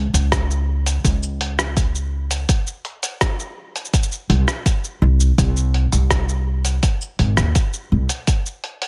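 A woody, thumpy pizzicato upright bass with a dark gut-string tone sits up front in this hopeful, playful folktronica excerpt, joined at 0.1 seconds by a muffled, compressed sampler-style kit of cabasa, hi-hat and rim click and from 0.3 seconds by a deep, tape-warm electronic kick, all in a dry, close mix.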